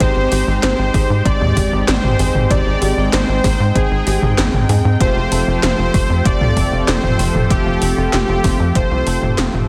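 A nostalgic, driving synthwave excerpt in a straight 4/4, where a smooth, detuned supersaw carries the melody through digital delay, shadowed by a very quiet, pure FM bell on a second line, over a shimmering chorused pulse-width pad that pumps against the sidechain. An up-front, nasal sequencer bass and punchy overdriven kick anchor gated 80s electronic drums with metallic hats and handclaps, while fat analog brass stabs sit in the background and a dark, round pluck plays arpeggios until 5.0 s. At that point the chords move from Abmaj7 to Fadd9 and a twangy, clean electric guitar riff enters through an envelope filter, before the track fades out from 8.3 s.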